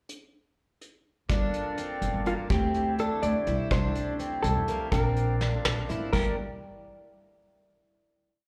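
A dark, clean hollow-body jazz guitar carries an arching, motif-based melody from 2.3 seconds over a driving, intricate progressive instrumental in 5/8 at 248 BPM in G dorian, where a vintage brush drum kit opens alone with a pickup bar before a woody, thumpy upright bass riff, a shimmering octave-doubled twelve-string acoustic ostinato with slapback echo and delay, and a reedy, lightly overdriven tonewheel organ holding rootless chords through a slow rotary speaker enter at 1.3 seconds, moving through Gm7, D7sus4, Am7/C and Bb to a final Gm7 chord in the small-room club reverb of a live gig.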